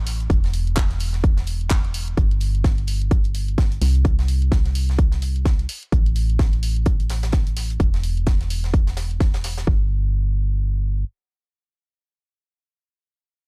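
The recording is gritty and close, with little reverb and a hardware, transformer-saturated edge. This is an uplifting, euphoric piano house excerpt at 128 BPM in 4/4, with a 16th-note swing that gives the groove a gentle lilt. Up front, an organ-like FM bass sits low and dark, its hollow, percussive notes striking fast and then decaying, thickened by tube saturation and pumping against the sidechain. A punchy electronic kick, layered and re-recorded in a small room, drives the beat alongside a house kit of handclaps and hi-hat. Further back, a dry acoustic reggae kit adds a high-tuned snare and filtered hats that pump with the sidechain. The drums drop out by 9.8 seconds, leaving the bass to carry on alone until 11.0 seconds.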